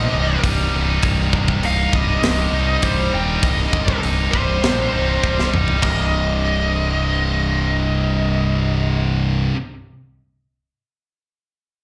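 A growling, overdriven electric bass sits up front beside a bright, high-gain guitar riff with slapback echo, while a second distorted riff guitar lurks in the background, a lead guitar carries a melody through digital delay until 9.0 s, and a tight metal drum kit with bright cymbals and a drum fill at 5.2 s drives this relentless, aggressive heavy metal excerpt in C minor at 100 BPM, captured live through a club PA with little reverb.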